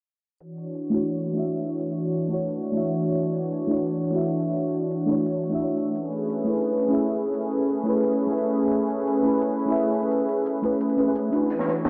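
A deep, mellow chord stab with a detuned sawtooth edge sits up front from 0.9 seconds, its chorus, phaser and diffuse delay drifting through a filter sweep over a smooth, sustained analog pad in this dreamy liquid drum and bass excerpt at 173 BPM in D lydian, moving from Dmaj9 to Amaj9. A gritty, compressed electronic hi-hat ticks in the background, while the whole mix is soaked in a huge ambient reverb. A crunchy, saturated breakbeat kit with a high-tuned snare and rolled-off top arrives only at 11.5 seconds.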